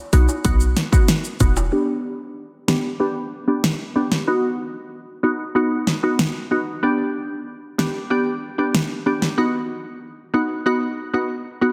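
Set in a lush hall reverb with a dense, heavily limited modern master, this sunny, summery dancehall excerpt at 94 BPM opens with a glassy, crystalline wavetable pluck carrying the chords, a punchy, tight 808-style bass, a layered pop drum kit with a fat snare, and bright, close tube shaker and timbales, until the bass and hand percussion drop out at 1.7 seconds as a filter sweep begins on the pluck, and the drums then stop at 9.4 seconds.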